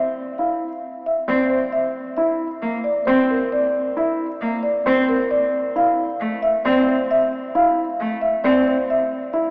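A straight, even 4/4 pulse drives this short cut from a longer minimalist classical piece, and its hypnotic, urgent pattern music moves at a brisk clip. A marimba played with soft mallets carries the melody from the very start, its padauk bars sounding woody, mellow and round as they sit up front in the mix. Close behind at 0.4 seconds, a grand piano enters with warm, up-front arpeggios in a low middle register. At 1.3 seconds a single bowed cello joins as accompaniment, rich and smooth with vibrato, holding an even line that sounds distant beneath the other two until it drops out at 8.6 seconds. The harmony opens undefined before shifting to a C7 chord and then a rootless D7 colour. Everything is bathed in a long, wet cathedral reverb, as if heard in a church or concert hall, though the overall sound has a small-speaker quality.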